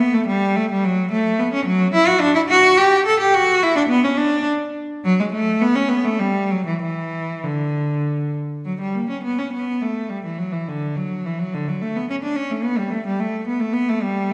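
A clear, smooth, even cello played by one bowed player with vibrato carries this flowing, dance-like baroque-style suite movement alone from 0.0 to 14.3 seconds, moving in a rubato 3/4 at about 96-110 BPM in D major, its sound placed in a reverberant recital hall heard from further back in the room with a softened top end, in a short passage cut from a longer piece.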